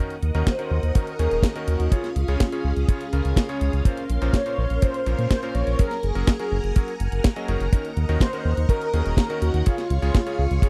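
A dry, tight kick drum sits up front in this nostalgic, bittersweet italo disco excerpt at 124 BPM in straight 4/4, alongside a house kit's cracking snare and hi-hat, a deep, round analog bass, clangy electric grand piano stabs with tape echo, lush string machine chords with ensemble chorus, and a brassy, detuned synth brass melody with vibrato, chorus and tape echo, all cycling through Ebm7, Db, Bbmadd9 and Gbadd9 in a close, 1970s-style studio sound.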